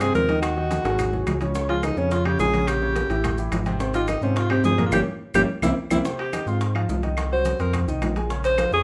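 This fiery, sultry Afro-Cuban jazz excerpt in F minor at 214 BPM opens with a breathy alto saxophone carrying the melody up front, its soft attack and light vibrato set over polished grand piano chords and a smooth, ring-modulated synth bass. Ringing metal-shell timbales, woody claves, thick-skinned congas and tight, high-tuned bongos sit in the background, grainy maracas sit close, and drum fills arrive around 0.7 and 4.9 seconds. A band accent leads into the saxophone's solo at 6.0 seconds, all within a moderate, large-studio reverb.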